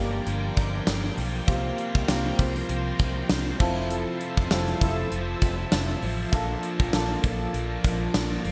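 A short cut from a longer 1980s-style pop piece opens on a concert grand piano with a deep low end, a string machine laying down lush, slow-attack sustained chords, a muted fingered electric bass that sounds round and punchy, and an overdriven electric guitar sitting in the background, the guitar and piano both coloured by analog chorus. At 0.3 seconds the gated drum kit arrives up front, with a fat snare, tight kick, brilliant cymbals, hi-hat, tambourine and crash ringing in a polished gated room. The mood is glossy and romantic, moving at 99 BPM in 4/4 with a light sixteenth-note swing in C mixolydian, as the harmony passes from Gm7 through C7sus4 to Fmaj7 and Bbmaj7. From 3.9 to 5.1 seconds fat, brassy synth stabs with warbling vibrato cut in from the background, marking a band accent that runs to 6.3 seconds. A lush hall reverb and gleaming digital sheen give the whole production its vintage gloss.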